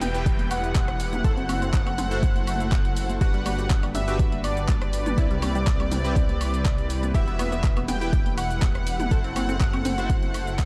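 A straight 4/4 progressive house groove at 122 BPM in E minor rests on an up-front, tape-warm electronic kick entering at 0.3 s, over a deep house kit of cabasa, handclaps, hi-hat, ride cymbal and woodblock, with overdriven congas, rim click and toms pumping in the background. A rumbling detuned saw bass and punchy, airy supersaw stabs pump beneath a bold, bright unison lead with vibrato, while a soft, round pluck carries a second line and a tight, driving sequenced synth with 12-bit grit plays arpeggios until 9.9 s. A lush, phased pad holds chords moving through Emadd9, F#m7b5, Gmaj7 and Cmaj7, a very quiet downlifter sounds until 3.2 s, and the dark, warm production gives this excerpt a bittersweet, expansive mood.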